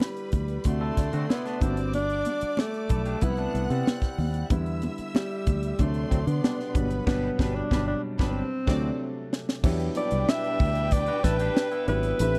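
A mellow, vibrato-laden alto saxophone sings the melody up front over a tight, dry funk drum kit with bright cymbals, a lush bowed violin section carrying a second line with slapback echo, warm baby grand piano accompaniment, very quiet high-tuned congas that drop out at 6.9 seconds, punchy fingered electric bass entering at 0.3 seconds and a dark, twangy guitar riff through spring reverb, while a bright trombone section adds background stabs from 6.1 seconds in this cinematic, bittersweet 1970s-style soul cut at 93 BPM in E minor, moving from Em7 through D7, Gmaj7 and Cmaj7 to an Em9, with a band accent and drum fill leading into a new section.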